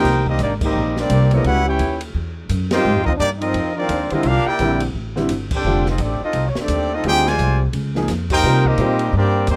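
Brassy and swinging, this big band swing excerpt in C minor moves at 172 BPM, with an up-front trumpet section carrying the melody over a trombone section's second line, both showing light vibrato and bathed in plate reverb. A clear, intimate grand piano with audible action noise accompanies through chords such as Cm7, C13 and F69 until 9.0 seconds, while a woody pizzicato upright bass and a dark, small-room jazz drum kit with a boomy kick drive the pulse. Band accents punctuate the passage at 0.6, 2.7, 5.5 and 8.3 seconds, and the rough home-demo mix sits in a light reverb.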